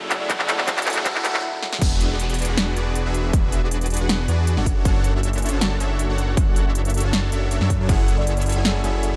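A thick, detuned saw bass with chorus and sidechain pumping sits up front in this lush, dreamy half-time future bass excerpt at 158 BPM, joined by a smooth supersaw riff, a punchy overdriven electronic kick, and an overdriven big-room drum kit with punchy snare, handclaps, crisp hi-hat and crash, while a riser, swell and downlifter, a faint ethereal pad, a bell-like tine electric piano and a woody, buzzing kalimba with 12-bit sampler grit and dub echo carry a build-up that breaks into the drop at 1.8 seconds, with the kalimba and electric piano returning at 7.9 seconds.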